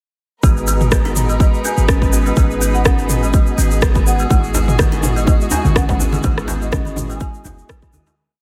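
A hypnotic, earthy afro house drop in G# minor at 124 BPM opens at 0.4 s with a punchy, up-front four-on-the-floor electronic kick, a deep, boomy 808-style bass sliding through long notes, a woody kalimba step sequence, round tonewheel organ stabs through fast rotary speaker and tape echo, a gut-string string section holding sustained chords over G#m7, and a grainy tube shaker in sixteenths, with the bass, kalimba, organ and strings pumping to the sidechain, soon joined by the house drum kit's programmed hats, rim and toms and a distant, airy bamboo bansuri with vibrato and tape echo in the background, before small-room congas and a very quiet, hard-handed djembe enter at 4.3 s as the harmony shifts to Emaj9/G#, and the whole drop fades out from 5.6 s.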